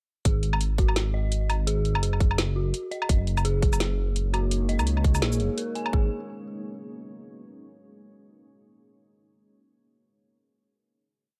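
A sparse half-time drum and bass beat at 169 BPM, swung on the 16ths, drives this short, heavy and cinematic piece in G# minor, with a tight, up-front electronic kick and a kit of woody snare, metallic closed hats, shaker and low woodblock running from 0.3 to about 5.9 seconds. Underneath, a deep, rumbling detuned saw bass holds long, saturated notes, while an eerie, inharmonic FM bell plays a 10-step arpeggio loop that drifts against the bar, coloured by chorus, delay and 12-bit sampler grit. A moody ambient pad with chorus, built-in reverb and sidechain pumping enters at 4.0 seconds with slowly shifting chords and carries the final G#m7 chord, ringing out until 7.3 seconds.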